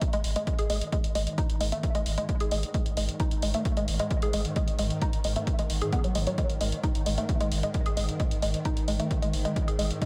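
This short excerpt of driving peak-time techno opens with an electronic kick drum and hi-hat, the kick punchy and up front, setting an intense, industrial mood in a straight 4/4 metre. Almost at once a woody, wave-folded pluck enters with the riff, its fast attack and short decay giving a percussive, organic bite, while chorus and analog delay lend it a warbling, vintage character. A deep, round sub bass holds a single low note underneath, its sine tone mellow yet given grit by overdrive and rounded off by a low-pass filter. From 0.4 seconds a swarming drone enters behind them, detuned and granular, slowly evolving with a tense, long-releasing sustain and its own built-in reverb. The drone, pluck and bass all pump through sidechain compression, and the whole mix sits in a lush hall reverb that gives it a dreamy, soaked atmosphere.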